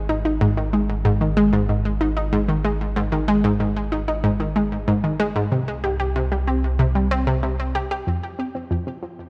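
Ambient, sequencer-driven space music with an expansive, luminous mood, this short cut from a longer piece is built on two synth parts. A bright, up-front analog pluck carries the riff, its detuned sawtooth and pulse-wave tones with a noise layer giving each fast-attack, short-decay note a round, warm bite, dressed in chorus, delay and shimmer reverb. A filter sweep runs across this arpeggiated sound throughout. Beneath it sits a deep sine sub bass, round and sustained, which drops out at 8.0 seconds and leaves the pluck to carry on alone into the closing passage. The harmony moves from Ab5 to C5 and then to F5 at 8.1 seconds, and a moderate concert hall reverb lends the whole a spacious, airy setting.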